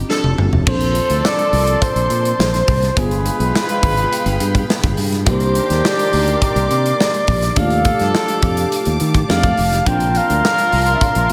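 Over an FM electric piano chord sounding from the very start, a tight, up-front studio drum kit plays a fill from 0.1 to 0.7 seconds and settles into a straight 104 BPM groove in 4/4 for this breezy, urban slice of polished 1980s jazz-funk pop in Bb major. A growly, punchy fingered electric bass drives beneath that sparkling, bell-like FM electric piano with phaser, chorus and slapback echo, a clear horn section with its own slapback, and lush, softly bowed background strings. Meanwhile a mellow flugelhorn with vibrato takes the melody from 0.7 seconds over chords moving through Bbmaj9, G7b9, Cm9, Ebmaj9#11 and F13, the whole mix set in a big, arena-like hall reverb.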